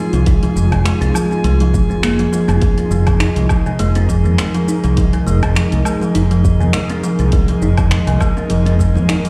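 A blurred, slowly evolving granular cloud pad with sidechain pumping, woody kalimba arpeggios with delay, and a glassy, chorused texture of drifting overtones open this meditative, earthy organic downtempo excerpt at 102 BPM with a light 16th-note swing in F minor pentatonic over a held Fm7 chord, soon joined by a dark, round fretless electric bass up front, an overdriven deep house kit of finger snaps, hi-hat, shaker and woodblock, and a deep, overdriven electronic kick entering at 0.3 seconds, all heard as if played on a big sound system in a bare stone room.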